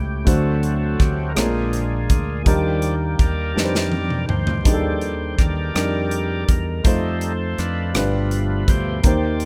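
Overdriven tonewheel organ takes the lead, soloing across the whole passage with a thick, gritty tone spun through a fast rotary speaker, sitting over its own sustained chords. This is slow gospel in 6/8 at 55 BPM counted in dotted quarters, solemn and fervent, cut from a longer piece. A baby grand piano accompanies with an intimate, natural sound, long sustain and audible action noise, placed up front, while a fingered electric bass runs through an envelope filter for a bright, punchy, amped tone. An acoustic drum kit with a tight kick, medium-tuned snare, rim click, hi-hat and toms enters at 0.3 s and plays a fill from 3.6 to 4.7 s. The harmony moves through D7, Bb7 and Ebmaj7, then F7 and G7 near the close, and the whole has a rough home-demo quality with small room ambience.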